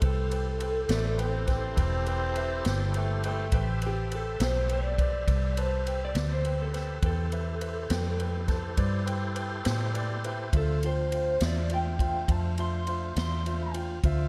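A smoky, brooding slow blues in 12/8 at 68 BPM opens at once with most of the band: a slightly broken-up electric guitar through a small old amp carries the melody, bathed in lush chorus and plate reverb, over a bright concert grand piano, a tonewheel organ holding chords through a slow rotary speaker, a round, foam-muted electric bass sitting up front, and a swinging big-band kit with punchy kick, high-tuned snare and dark cymbals. A breathy, growling tenor saxophone adds a brief second line from 0.9 to 3.7 seconds. The piano plays a fill at 9.7 seconds just before the harmony moves from Am7 to Dm7, all within a warm, shadowy production in A minor.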